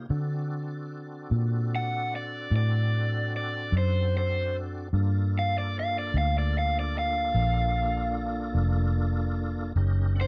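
This smoky, brooding slow blues in G minor opens with a tonewheel organ holding full, lightly overdriven chords through a slow rotary speaker and chorus vibrato, set over a round, foam-muted vintage electric bass that sits dark and up front. The pace is 50 beats per minute in a straight 12/8. At 1.8 seconds a raw garage guitar enters with an overdriven, picked solo line in a high, narrow register, placed up front in the mix. The harmony moves from D7 to Gm9 and back to D7. Light reverb and a dark, warm production give this short cut from a longer piece a smoky atmosphere.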